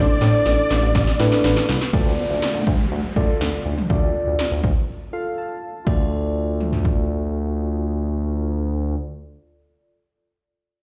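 Nocturnal and driving, this synth-pop fragment in D dorian moves at 122 BPM in a straight 4/4, cut from a longer piece and heard through a big sound system in a bare room with large studio reverb. A thick, detuned unison lead states a brief melody on D5 with tape echo, sounding only until 1.7 seconds, while muted, felt-like synth keys with chorus and a low-pass filter carry a soft, dark accompaniment that gets a filter sweep in the middle section and a short fill just before the final part. Underneath, a smooth, nasal synth bass sits up front between A1 and A2, moving from an Asus4 chord to D minor at 1.9 seconds. The 80s electronic pad drums open with a fill, pairing a punchy kick and metallic hats with a gated snare and toms treated with gated reverb, then drop out at 7.0 seconds. An electronic downlifter sweeps through from 1.9 to 5.9 seconds, with a break near the end of that stretch before the closing section.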